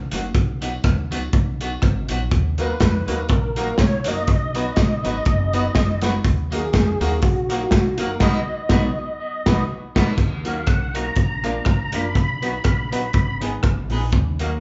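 Driving and mischievous, this swung 122 BPM ska passage rides on a gritty, saturated breakbeat kit up front, a woody pizzicato upright bass in the background, a twangy clean electric guitar soaked in dub echo and a distant, jingly tambourine that drops out at 8.1 s, while from 2.6 s a tonewheel organ with key click, chorus vibrato and slow rotary speaker carries the melody over polished upright piano stabs, the band hits an accent just before the turn to Eb harmonic minor at 10.2 s, all captured live in one large studio room with a dark, muted top end.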